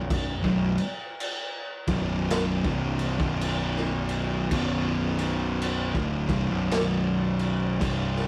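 Heavy and brooding, this short stoner and doom metal excerpt crawls along at a slow, swung pace, cut from a longer piece and built on a B5 chord. Two fuzz guitars carry the distorted riff together: one thick and up front with a warm, picked tone, the other darker and compressed, sitting in the background. Beneath them, a fuzz picked electric bass adds a bright, punchy, overdriven low end, heard direct and amped. A raw garage drum kit enters at 0.1 seconds with crash cymbal, punchy kick and a medium-tuned snare, sounding saturated and gritty with a rolled-off top in a small, pumping room. Light reverb and a rough rehearsal-room sound give the whole take a live, unpolished weight.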